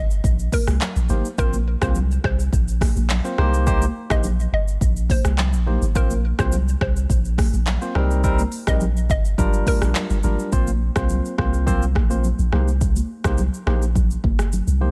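A straight 4/4 afrobeats groove at 105 BPM in C minor sets a hypnotic, sultry mood, as an electronic afro-pop kit with a deep kick, crisp hats, handclaps, rim click and shaker sits up front beside a punchy, pitch-dropping sine sub bass, while ringing high-tuned congas linger in the background, a bright, barky tine electric piano enters at 1.1 seconds with Cm7, Bbsus2 and Gm7 chords, and a hollow, detuned square-wave pluck with chorus and digital delay carries the melody until 9.8 seconds, all set in a digital ambience in this section cut from a longer piece.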